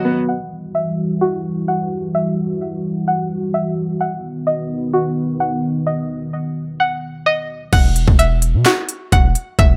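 Light reverb and a digital ambience frame this menacing, eerie trap excerpt, a half-time hip hop cut at 129 BPM in E harmonic minor. From the opening break at 0.0 s, a dark analog pad holds deep, moody sustained chords built from detuned sawtooth and triangle tones with a sub octave, a slow attack and a long release, while a twangy, nasal resonator pluck spins bright string-like arpeggios through chorus, a low-pass filter and tape echo. A filter sweep runs across this opening stretch as the harmony moves from Emadd9 to B. At 7.7 s the pad stops, the chord turns to Esus2, and a punchy, heavy 808-style bass drops in with a sine body, a noise layer and a fast, decaying attack. An overdriven electronic trap kit arrives at the same moment, with a hard-clipped kick, sharp snare, crisp hi-hats, handclaps and a crash cymbal re-recorded in a large room and placed up front. The pluck carries on over the bass and drums until the cut ends at 9.8 s.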